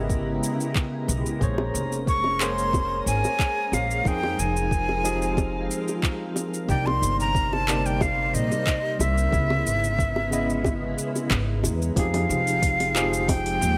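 Sunset chillout at 91 BPM in a straight 4/4, smooth and warm, this short cut from a longer piece opens with a worn, slightly out-of-tune tine electric piano carrying overdrive and tape echo, a silky string machine with phaser and ensemble chorus, a woody pizzicato upright bass, and a glassy, drifting harmonics texture that sits in the background with chorus and reverb until 12.0 s. A soft, tape-warm electronic kick and an overdriven deep house kit of handclaps, metallic hats and shaker drive the groove, tight high-tuned bongos join at 1.6 s, and a breathy, bright jazz flute with crisp chiff, vibrato and tape echo takes the melody up front from 2.1 s. Minor ninth chords move from Dbm9 through Bbm9, Fm9 and Cm9 and back to Dbm9, settling on Fm9 as a new section begins at 12.0 s, all in a light reverb.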